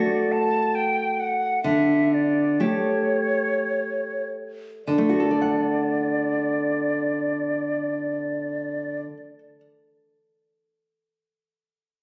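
In a rubato 3/4 that drifts between 47 and 73 BPM and slows through the opening 4.9 seconds, this tender, lyrical fragment of a romantic duo in D major pairs an airy silver concert flute, singing the melody between C#5 and A5 with gentle vibrato and a soft attack, with a full-bodied, fingerpicked nylon-string guitar whose fresh strings and deep classical tone carry the accompaniment from D3 up to F#5. The harmony moves from D to A7 over D and settles back on D as a new passage begins at 4.9 seconds. The flute falls silent at 9.0 seconds while the guitar rings on alone to 9.6, both instruments sitting up front in a phone recording made in the room, lightly reverberant and compressed.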